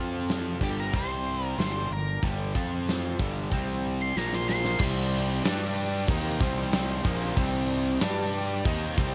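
Brooding and gritty, this blues rock and southern rock power-trio excerpt moves at 93 BPM in a straight 4/4, with a bright, double-tracked overdriven semi-hollow guitar riff up front over a growly fuzz fingered bass, a big-room drum kit with a fat snare and punchy kick entering at 0.3 s, a very quiet thick organ holding sustained chords through a slow rotary speaker, and a dark octave-fuzz lead guitar melody that stops at 4.8 s, just after a drum fill, as the music settles into C minor under light reverb.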